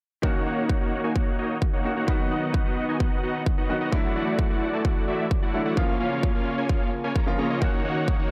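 From the first moment, a punchy, overdriven electronic kick drives this triumphant, uplifting festival progressive house clip, while huge, detuned supersaw chords ride up front through a low-pass filter and delay, pumping with sidechain compression. Behind them, a thick, warbling vintage pad with chorus and slow attack holds sustained chords as a filter sweep moves across an analog synth pad, and a clear but worn grand piano with short sustain and delay adds accompaniment in the background. The dry mix cycles through F#6, B, Dadd9 and A#m before returning to F#6 at 7.6 seconds.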